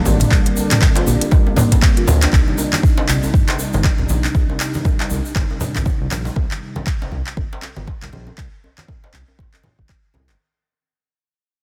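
A swung 4/4 groove at 119 BPM drives this earthy afro house excerpt in C minor, built on an up-front, overdriven electronic kick and an afro-pop drum kit of handclaps, crisp hi-hats and toms, with ringing congas and a deep, saturated djembe in the background and a grainy, distant tube shaker (until 6.3 s). A smooth sawtooth synth bass with vibrato and a detuned, chorused analog pad holding sustained chords both pump with the sidechain. A woody kalimba plays tape-echoed arpeggios only until 2.3 s, when the harmony moves from Bb to Cm and the dense, heavily limited track begins to fade out.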